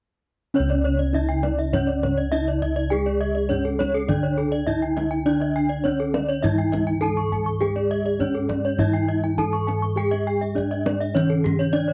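A steady, straight 4/4 pulse at 102 BPM drives this brilliant, shimmering Balinese gamelan passage in C# pelog, cut from a longer piece and recorded close and dry in a 1970s-style studio with light reverb. A bronze metallophone struck with a wooden mallet carries the melody, its paired tuning producing shimmering beats and an airy, ringing edge. Below it, a mellow, soft metallophone played with padded disc mallets sits in the background as accompaniment, while up-front bossed gongs supply a round, beating bass line. Two more metallophones struck with horn mallets spin arpeggios high above, one dark and smooth, the other bright, both alive with the same pulsing beats of paired tuning. The kendang adds deep, acoustic drumming with a small-room sound, joining at 0.7 seconds as the full ensemble plays through to about 11.9 seconds.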